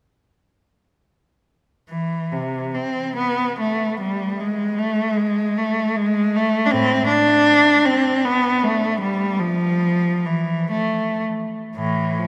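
Lonely and meditative, this classical excerpt features a single bowed cello playing unaccompanied in A minor, moving freely in a rubato 3/4 at roughly 49 to 81 BPM. The cello sits up front with a rich, focused tone and vibrato, ranging from A2 to D4 between 1.9 and 12.3 seconds. A wet cathedral reverb with a 4.4-second decay surrounds the instrument, and the passage is cut from a longer piece.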